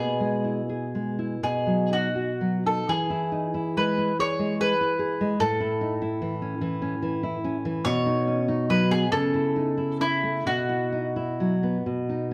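A romantic duo for mandolin and classical guitar, this serene, tender fragment of a longer piece moves in a rubato 6/8 at around 40-50 BPM in E major, drifting from E to A and B before pausing on a Bsus4 at 10.5 seconds. The mandolin carries the melody up front with a bright, woody tone from its picked double strings, while the nylon-string guitar supplies full-bodied fingerpicked accompaniment, its finger squeaks audible. Moderate recital hall reverb and a dark production wrap the pair in an intimate, softly glowing space.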